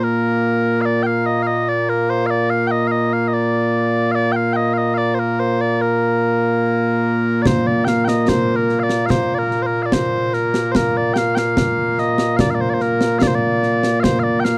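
The rhythm moves in a straight 2/4 at 73 BPM, giving this Scottish traditional pipe music a measured, ceremonial stride in Bb major. Mellow small bagpipes carry the melody throughout, their sweet, continuous tone sitting up front and spanning from Bb2 to G5, playing alone for the first 7.5 seconds. At 7.5 seconds a concert snare drum and concert bass drum join beneath the pipes, acoustic and close, with dark cymbals adding a shaded edge. The sound is dry and close, in the manner of a 1970s studio recording, touched only by light reverb. Proud and ceremonial in mood, this short excerpt is cut from a longer piece and ends at 14.6 seconds.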